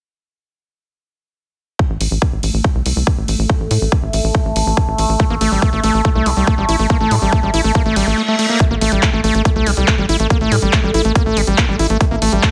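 A punchy, layered electronic kick opens this hypnotic, alien psychedelic trance passage at 1.8 s, joined at once by a tight, saturated sawtooth sequencer bass and a produced dance kit of handclaps and hi-hat, while a ring-modulated drone with moving overtones, chorus and sidechain pumping holds sustained chords under a filter sweep. A squelchy, gritty acid bass riff with distortion and delay enters at 5.2 s, and a reverse cymbal sounds as the kick drops out briefly before the next section lands at 8.6 s. The whole mix has a heavily compressed, radio-like sound with light reverb.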